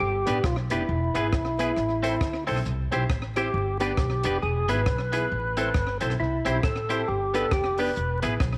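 A swung ska groove at 136 BPM in 4/4, with 60% swing on the eighth notes, drives this upbeat, cheerful passage in C major, cut from a longer piece. Upright bass is there from 0.0 s, plucked and woody with steel strings and placed up front, while a fat, lightly overdriven tonewheel organ carries the melody from the start, its third-harmonic percussion and vibrato turning through a slow rotary speaker. At 0.3 s a compact cocktail kit joins with a punchy, dry kick, hi-hat and rim clicks touched by slapback echo, alongside a bright, twangy clean electric guitar, picked and compressed and bathed in spring reverb. A clear upright piano adds natural-sounding stabs in the same span. The chords cycle through G, E, Am and C, and the recording sits in light studio ambience over a layer of vinyl crackle.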